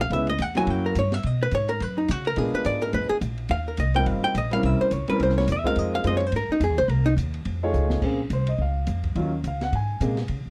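Small-group swing and bop jazz in Bb minor at a brisk 212 BPM, moody and cool, with a dark, clean, compressed hollow-body archtop guitar up front taking a picked solo until 7.1 seconds, over woody, thumpy pizzicato upright bass on gut strings and a deep-bottomed concert grand piano comping through chords such as Gb7b9, Bb7b9 and F7alt. An open drum kit with dark cymbals, a high-tuned snare and a boomy kick sits further back, rolled-off and smooth, and plays a fill at 7.7 seconds before the piece moves into Bbm9 at 8.0 seconds. The sound is a dry, close 1970s-style studio recording with little reverb, cut from a longer piece.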